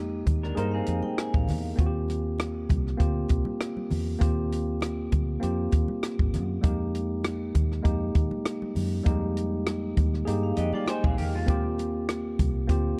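A worn, slightly out-of-tune tine electric piano and a round, foam-muted fingered bass open this silky, cinematic 1970s-style soul excerpt at 99 BPM in F dorian, joined at 0.3 s by a dry cocktail drum kit with a punchy kick and very quiet congas, while a twangy, slightly broken-up guitar with lush chorus and a ringing, hard-mallet vibraphone with fast motor vibrato appear briefly near the start and again near the end, over Fm11 and Eb6 chords in a dark studio reverb.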